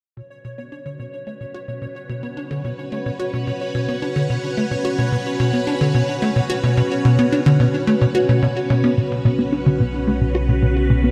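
A straight 4/4 pulse at 109 BPM drives this mysterious, expansive stretch of sequencer-driven ambient space music in B minor, cut from a longer piece. A tight, punchy, wave-folded sequencer bass riff and a lush, vintage string machine with phaser and ensemble chorus both fade in over the first 9.0 seconds, while a faint, detuned gated texture pulses high above. At 9.0 s a deep, round sine sub bass enters as the sequencer bass takes a filter sweep, the whole dreamy mix soaked in long plate reverb.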